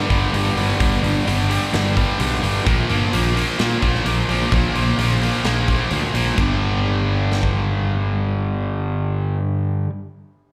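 Hard rock excerpt with an energetic, powerful drive, heard live through a club PA in a small, reverberant room: a bright, double-tracked cranked stack guitar riffs on overdriven power chords moving from G5 to Bb5 and back, a fuzzed, punchy picked bass holds down the low end until 9.4 seconds, and a huge arena drum kit with a boomy kick, medium-tuned snare and bright cymbals pumps beneath them before dropping out at 7.5 seconds, leaving the strings to ring on.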